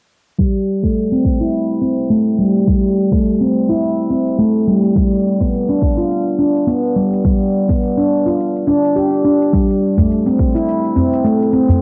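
A home recording on cassette with a short, wet booth ambience and a dulled, tape-filtered top end opens this short cut from a longer organic downtempo piece, earthy and mystical in mood, moving at 105 BPM in 4/4 with a light swing on the sixteenths in A minor. Up front, a ringing, meditative handpan of nitrided steel plays arpeggios between G3 and G4 from 0.4 seconds to the end, its full, fingertip tone colored by cassette saturation and analog delay, with a filter sweep running through the whole passage. A deep, layered electronic kick drum, tape-softened and re-recorded in a small room, sits prominently beneath it until 10.5 seconds. An electronic shaker stays very quiet in the background throughout. At 10.0 seconds a small acoustic udu enters, close and dry, carrying the final moments alongside the handpan and shaker.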